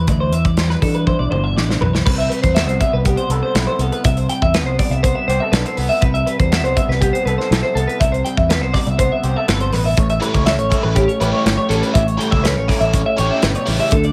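A twelve-string electric guitar opens this wistful, intricate math rock and midwest emo excerpt, its clean, twangy, compressed arpeggios sitting up front with a shimmer of analog chorus. Beside it, an electric guitar through a small old amp plays picked accompaniment, bright and slightly broken-up, washed in spring reverb. A fingered electric bass, heard direct and amped, carries the low end from the start, and a modern studio drum kit joins almost at once with a punchy kick, medium-tuned snare, hi-hat, toms and crash, mid-forward and rolled off at the top. The music moves at a steady 121 BPM in straight 4/4, and a drum fill from 1.1 to 2.1 seconds leads into the longer second section, where the harmony rests on Em7 before turning to A7. At 10.2 seconds a biting, warm, double-tracked overdriven guitar slips in low in the mix with a phaser-colored riff, all set in a light reverb.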